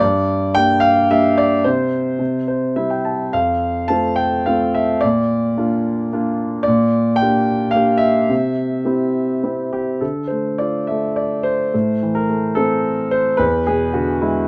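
Brooding and moody, this lyrical classical solo piano passage, cut from a longer piece, moves in a rubato 3/4 at 108 BPM on a concert grand tuned to A4 = 436 Hz, its deep bass, open tone and long sustain sitting up front in light reverb, with a brief fill at 2.2 seconds and a turn to D minor at 10.0 seconds as the chords travel from Gm through C, F and Bb toward Dm, Am and E7.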